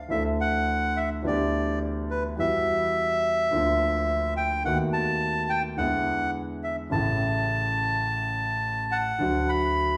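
This tango, cut from a longer piece, moves at 106 BPM in 4/4 with a free, rubato feel, set in D major and tuned slightly sharp to A4 = 441 Hz. The mood is tense and passionate. A reedy, dark bandoneon sits up front and carries the melody in a smooth upper register from B4 to B5 across the whole 10 seconds. Beneath it, a concert grand piano supplies accompaniment from A1 to A4, with deep bass, audible action noise and an intimate, vintage character that keeps it close to the listener. The harmony drifts from Dsus2 through G6/D, Emadd9, Bb/D and B7/D# before settling via E7 and A onto D at 9.2 seconds. The duo plays live together in one large studio, wrapped in a wet reverb with a 1.3-second decay.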